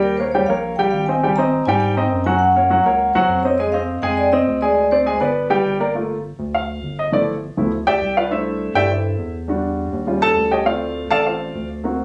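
A driving, straight 4/4 pulse at 203 BPM carries this sophisticated Afro-Cuban jazz excerpt, with a deep, dark analog bass holding the bottom. A ringing, metallic vibraphone with medium mallets and its motor off states the melody until 5.6 seconds over woody, polished upright piano chords, moving through rich harmonies such as Eb13, Abmaj9 and Abmaj7#11. From 5.9 seconds the up-front piano takes a solo over Gm9, G13 and C69, all heard through a phone recording of the room with studio ambience, light reverb and compression.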